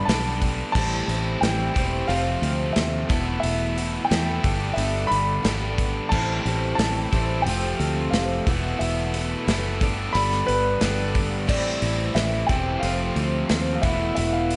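Folk rock and heartland rock at 89 BPM in A minor, reflective and dusty, cut from a longer piece as it circles through Gadd9, Am7, Fadd9 and Esus4. A dark, mellow grand piano with audible action noise carries the melody over a shimmering, octave-doubled twelve-string acoustic guitar and a crunchy, double-tracked overdriven guitar riff, all three touched with slapback echo, while a punchy, foam-muted fingered bass and an up-front natural country drum kit with hi-hat, snare, kick and crash hold the groove. A very quiet tonewheel organ through a rotary speaker slips in with sustained chords at 6.1 seconds, and moderate concert hall reverb gives the whole a big arena sound.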